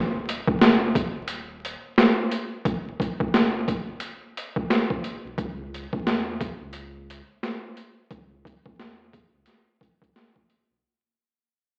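Moody and tough, this boom-bap hip-hop excerpt moves at 88 BPM in C# minor with a 61% 16th-note swing, fading out across its full 10.8 seconds. A gritty, pitched-down sampler drum kit sits up front with a thumpy kick, high-tuned snare and hi-hat, overdriven and re-recorded in a large room, while a deep, mellow sub bass with octave sustains far beneath it from D#1 to E2. The whole sound is coloured by an echo-chamber reverb, vinyl crackle and an AM-radio character, as if played through a big system in a bare room.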